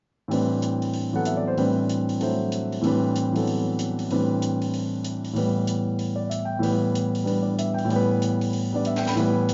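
A brisk swung 4/4 at 190 BPM drives this modal jazz fragment in A dorian, cut from a longer piece, with a spiritual, hypnotic mood as a concert grand piano comps from A2 up to B5 over Am11 before moving to Em/A at 5.4 seconds. The piano sits up front with a natural, warm tone and deep bass, while a compact cocktail kit of hi-hat and a dry, high-tuned snare plays far lower in the mix. A recital-hall reverb with a 1.4-second decay bathes the sound in a church-like space, its top end dulled and rounded.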